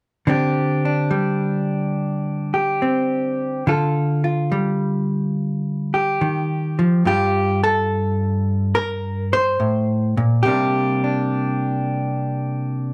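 A dark, clean hollow-body electric guitar plays alone and up front in this cool, late-night solo jazz passage cut from a longer piece, its picked, compressed tone ranging from G2 to C5 at a swung 71 BPM in G minor, moving through suspended and ninth chords from D7sus4 and Gsus2/D into Gm9 at 7.0 seconds and C7sus2, all set in a moderate studio reverb.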